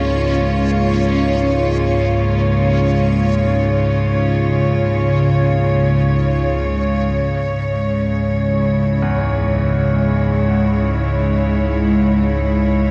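Dark ambient drone in free time and C# minor, ominous and cavernous, with a rich, earthy chamber cello section bowing sustained chords with light vibrato up front alongside a warm, evolving, detuned analog drone of sawtooth and pulse-wave tones, resonant and shimmering with pulse-width modulation and chorus. A reversed, swelling texture of dreamy granular triangle tones floats above in its own reverb until 7.1 s, when the harmony moves from A# minor to C# minor, while a brilliant, polished grand piano plays short-sustained arpeggios in the background through a diffuse ambient delay. The whole is bathed in a wet cathedral reverb with the grain of cassette tape, and this passage is cut from a longer piece.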